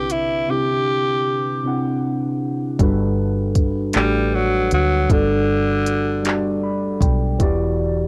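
A raspy, gritty tenor saxophone with light vibrato and scooped notes carries the melody up front until 6.6 s in this tender, sensual, slow six-eight R&B excerpt. Beneath it sit a mellow tine electric piano swathed in lush chorus, which adds a fill from 6.3 s, and a round, punchy, foam-muted dub bass with a dark tone. An electronic drum kit of soft kick, smooth hi-hat and handclaps completes the groove, all captured as a home cassette recording in light reverb as the chords move from Cmaj9 to Gmaj9 and then Em7.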